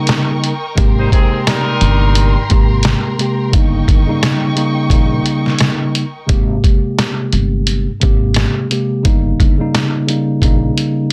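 A muffled, pitched-down sampler-style drum kit sits up front in this confident, soulful boom-bap hip-hop excerpt, its thumpy kick, medium-tuned snare and hi-hat carrying a swung 87 BPM groove in 4/4 and Ab major. A mellow tine electric piano plays clean accompaniment throughout, while a woody pizzicato upright bass enters at 0.8 seconds to anchor the low end. A vintage, jazz-style horn section lands tight stabs with light vibrato between 1.0 and 2.5 seconds, touched by digital delay. Lush, bowed studio strings hold expressive sustained chords until 6.3 seconds, when the piece moves into its second section and the drums, piano and bass carry on. The harmony circles between Eb7 and Abmaj9, and the mix is dense and heavily limited with light reverb.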